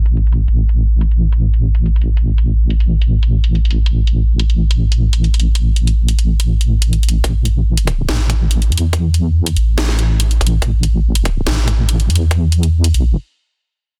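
A deep, saturated wobble bass of detuned sawtooth and sine, thickened with chorus and set up front, opens this dark, heavy half-time deep dubstep excerpt, joined at once by a garage kit of hi-hat and cracking snare under a filter sweep, before a tight, high-passed electronic kick enters at 7.2 seconds to drive a build-up that halts at 13.2 seconds, all in a dry, dense, heavily limited, low-passed mix.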